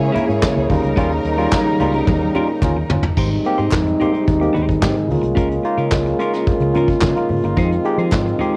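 A mellow, up-front French horn section holds sustained chords over a celebratory, glamorous disco groove in Ab major at 109 BPM, where a dark brush drum kit with a drum fill from 2.1 to 3.2 seconds, round foam-muted electric bass, barky tine electric piano, clean compressed picked guitar, very quiet congas and hollow group handclaps carry the rhythm, while a lush, distant string section plays a second line only until 3.1 seconds, all in a short cut with light small-room reverb and cassette-tape colour.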